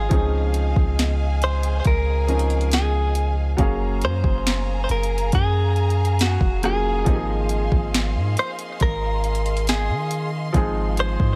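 A clean, direct-recorded electric guitar carries the melody in this short cut of a romantic, dreamy contemporary R&B piece, with a subtle chorus and delay, over a clear grand piano whose audible action noise gives it an intimate, natural presence. Beneath them, a long sustained 808-style bass sits up front with a deep, mellow sine tone that attacks quickly and then decays. From 0.1 seconds a smooth, produced drum kit joins with a soft kick, sharp snare, rim click and hi-hat, its overdriven sound re-recorded in a small room. High above, a lush symphonic string section holds bowed chords with vibrato and portamento, pumping under sidechain. The slow, unhurried harmony moves from Dbmaj9 through Gbmaj9 and Ab6 before settling on Fm7/Ab, all wrapped in a digital ambience.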